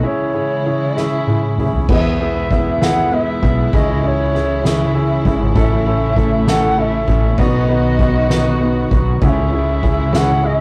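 A clear concert grand piano, muted strings and an upright bass open this tender, romantic pop ballad in six-eight, part of a longer piece. The piano sits up front with audible action noise. The con sordino strings hold veiled, lush chords with vibrato, and the pizzicato bass sounds woody and growly. A reedy bass bansuri carries the melody almost from the start, its airy, bright bamboo tone and vibrato heard from a distance. At 1.0 seconds a soft-mallet drum kit comes in with a fill, bringing a fat snare and boomy kick in a big room, before the fuller passage settles in at 1.9 seconds over a C#m, E, A and B progression. The whole take has the rough feel of a rehearsal room, with moderate booth ambience and saturated warmth.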